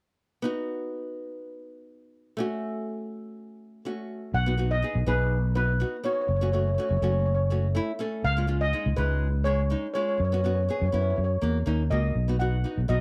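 Bouncy and sunny, this short calypso excerpt at 123 BPM in B major opens with a woody, fingerpicked nylon-string guitar alone, then at 4.3 seconds a shimmering, mellow steel pan played with soft rubber sticks takes the melody up front while a growly, amped fretless electric bass with lush chorus joins underneath, all in a dry, close 1970s-style studio sound with small room ambience.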